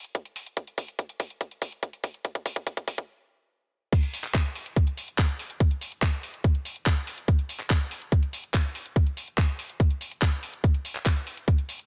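A dry, up-front trance excerpt with a psychedelic, intense mood, where a tight, high-pass-filtered electronic kick runs from the opening alongside a garage drum kit of crash cymbal, handclaps and bright hi-hats, building through a fill to a stop at 3.1 seconds before the drop lands at 3.9 seconds.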